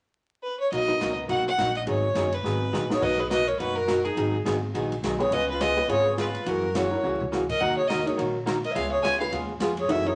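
Playful and swinging, this brisk country western swing excerpt moves at 209 BPM in B major with swung eighth notes. A rich, focused fiddle carries the melody from 0.4 seconds, bowed by one player with light vibrato and a smooth top, sitting up front beside a dark, clean archtop guitar played through an amplifier as picked, hollow-body accompaniment. Beneath them, a woody pizzicato upright bass with steel strings anchors the low end, while a big-band drum kit with dark cymbals, a medium-tuned snare and a punchy kick adds fills around 2.4 and 7.0 seconds. A detuned, jangly honky-tonk upright piano comps in two stretches, dropping out briefly before returning at 5.2 seconds, and a reedy tenor recorder with a soft attack and vibrato enters at 2.9 seconds as a distant second line. The chords run from Bmaj7 and G#m7 through C#7, F#7 and D#m, all framed by a wet club reverb and a vintage haze of vinyl crackle with a dulled top end.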